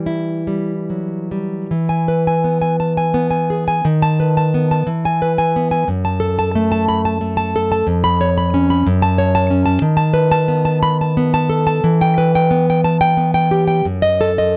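A rubato 6/8 pulse drifting between 46-66 BPM in dotted quarters carries this wistful, melancholic romantic excerpt for solo classical guitar, its warm, fingerpicked nylon strings sitting up front in a dry, close 1970s-style studio sound with light reverb as the harmony moves from E major toward E minor at 9.8 s and settles on a D#dim/F# chord at 13.9 s.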